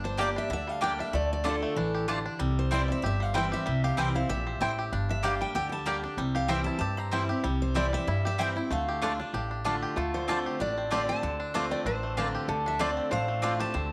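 A light reverb gives this short cut from a longer bluegrass piece an acoustic sound, and its mood is lonesome yet driving at a brisk 190 BPM in 4/4 with a gentle swing on the eighth notes, set in D minor. A twangy, percussive banjo played with fingerpicks and a full-bodied picked dreadnought guitar carry the melody together, the guitar sitting higher. A second dreadnought guitar with old strings supplies a woody accompaniment, while a dark, thumpy pizzicato upright bass on gut strings anchors the low end. From 0.2 seconds a bright mandolin adds stabs on its double strings over chords moving through Gm, Dm and C. At 10.0 seconds, as the harmony settles on Dm7, a mellow lap resonator guitar played with slide and fingerpicks enters with a nasal, metallic second line that runs to the close at 13.9 seconds.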